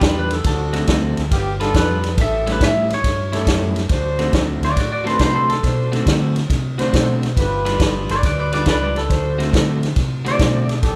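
A live band in one room with light reverb opens this short excerpt from a longer piece, a soulful, laid-back electric blues shuffle in D mixolydian at 139 BPM, swung on the eighths over D7, G7 and A7. A bright, twangy clean electric guitar solos throughout, over a slightly broken-up, compressed second guitar riffing and a jazz-style horn section adding stabs through analog delay. Underneath, a dark, round, foam-muted fingered bass and an up-front vintage kit with a punchy kick, medium-tuned snare and dark ride cymbal hold the groove.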